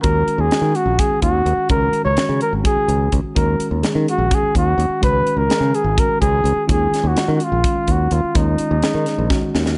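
This short cut from a longer electric jazz fusion piece opens with the full quartet at once: a trumpet in a bucket mute carries the melody over tine electric piano, fingered electric bass and a drum kit. The mood is nocturnal and slick, in Eb minor with the tuning set a touch low at A4 = 438 Hz, moving in 7/8 at 253 BPM counted in eighths with a straight feel. Up front, the muted trumpet sounds veiled and breathy with light vibrato and a smooth top, playing solo in a jazz style between Eb4 and Db5. The electric piano sits further back, its tone worn, mellow and slightly out of tune, accompanying through Ebm7 and Dbsus24 before settling on Ebsus2 and Ebm9, while the bass adds a bright, growly, direct line beneath. The drums are crisp, airy and polished, with a high-tuned snare and punchy kick placed forward in a small studio room, and a drum fill running from 9.3 to 9.8 seconds closes the passage.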